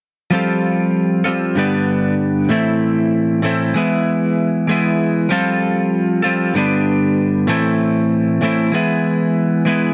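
Rock in a moody, cool A minor at 96 BPM, this short cut from a longer piece features a single bright, twangy twelve-string electric guitar playing a clean, picked, compressed riff up front from 0.3 to 9.9 seconds, cycling twice through Fadd9, G, Am and E, with the sound of a cassette home recording and light reverb.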